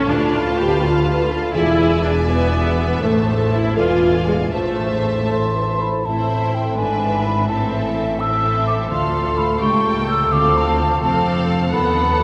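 Classical orchestral music in A minor and a straight 6/8 at roughly 77-87 BPM, restless and urgent, heard as a fragment of a longer work steeped in long cathedral reverb. A distant, lush violin section carries the melody over a clear second violin line, with rich bowed violas, background cellos and a focused chamber double bass section underneath. Ringing thumb-plucked harp arpeggios sound in the background, while dark, roomy French horns hold sustained chords. At 5.3 seconds an airy, hollow flute enters up front with a second line. Across the excerpt the harmony moves through dominant chords such as E7b9 and B7/D#.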